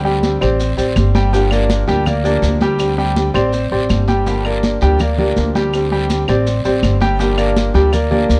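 Danceable and warm, this short excerpt from a longer Cuban son and guajira piece in G minor moves at 164 BPM in a straight 4/4, with clear, polished grand piano arpeggios with audible action noise and woody, thumpy gut-string upright bass up front, a dark, boxy fingerpicked archtop guitar accompanying, a close, raspy guiro, and soft-handed high-tuned congas, small-room claves and grainy vintage maracas sitting behind them, all captured with close, detailed microphones and little reverb as D7sus4 and Gm7 alternate throughout.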